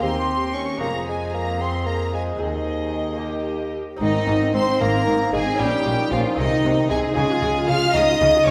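Heard in a reverberant recital hall, this brilliant, festive baroque-style concerto movement in Ab major moves at 76 BPM in 6/8, with a focused, vibrato-rich violin section and a warm bassoon solo sharing the melody, a lush violin section on the second line, a smooth viola section, a distant cello section, an intense double bass section and a very quiet, delicate fingerpicked lute, all playing throughout this 8.5-second passage.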